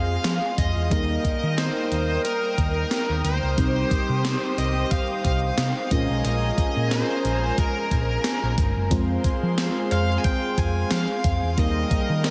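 Urgent yet nostalgic, this 1980s-style pop excerpt moves at 90 BPM in 4/4 with a light sixteenth-note swing, set in F minor and cut from a longer piece. A smooth, overdriven lead guitar carries the melody from the start, its picked tone trailed by delay, while an FM electric piano layered with a soft pad supplies lush, mellow accompaniment through chorus. Above them a brassy analog pad holds bold, detuned sawtooth chords with a filter swell and its own chorus, and a tight horn section adds vibrato-tinged stabs from the background. Up front, a hollow-body short-scale electric bass plays with a dark, round, amped voice, and a gated digital drum machine enters at 0.2 seconds with a thumpy kick, hi-hat and a gated-reverb snare recorded again in a large room. The chords cycle through Fm, Eb, Cm and Bbm7 before returning to Fm, all inside a dreamy, reverb-soaked mix with a long, huge ambient tail and a softened top end.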